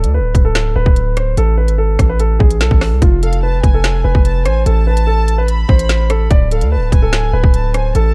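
Menacing and ominous, this half-time drill hip hop fragment opens with a dark, mellow grand piano carrying the melody through a low-pass filter and digital delay. It sits over a punchy, heavy 808-style bass with a fast attack and an up-front electronic drum kit of hard-clipped kick, woody snare, crisp hats and rim clicks. At 3.2 s a close, reedy violin section with light vibrato and gut-string tone enters softly as a second line, also treated with delay, all set in a small room within a warm production.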